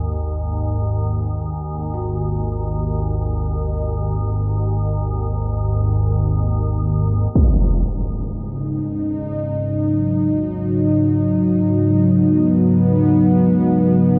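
A calm, wave-folded organ-like drone with ensemble chorus sits up front in G# minor while a very quiet, mellow bronze gamelan-type metallophone rings out soft, vintage-toned arpeggios, opening this ominous, unsettling dark ambient drone excerpt in free time, until at 7.3 s a bright, detuned, ring-modulated resonant pad enters with sustained chords and a huge, dark, low-pass-filtered impact lands at 7.4 s, the whole piece steeped in a vast, echoing reverb with the texture of cassette tape.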